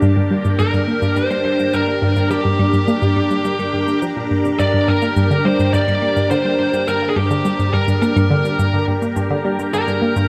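A bright, nasal analog pluck drives this expansive, cosmic stretch of sequencer-driven space music with a round, sawtooth riff coated in chorus, phaser and tape echo, its sound swept by a filter throughout. Lush, vintage string machine chords sit above it with a mellow ensemble chorus, while a dark, distorted high-gain lead guitar enters at 0.6 s to carry the melody through tape echo. Dry, overdriven cabasa and claves fade in from the background, and the whole passage, cut from a longer piece, is bathed in a wet concert hall reverb with a cassette tape character.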